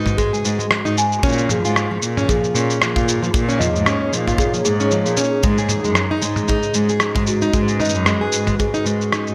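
Light reverb and a small room ambience frame this intimate, autumnal folktronica excerpt in G# dorian, moving at 114 BPM with a gentle swing as the harmony shifts from G#m to A#m and back before fading out from 8.2 seconds. A full-bodied, fingerpicked steel-string acoustic guitar plays arpeggios with digital delay, a bell-like celesta with soft felt hammers adds a delicate second line through its own delay, and a dark, warbling tape-like pad holds sustained chords with chorus and reverb in the background. Up front, a rich bowed cello carries the bass with vibrato and portamento, while a punchy acoustic kick and a muffled, compressed lo-fi sampler-style kit of rim click, shaker and toms drive the groove.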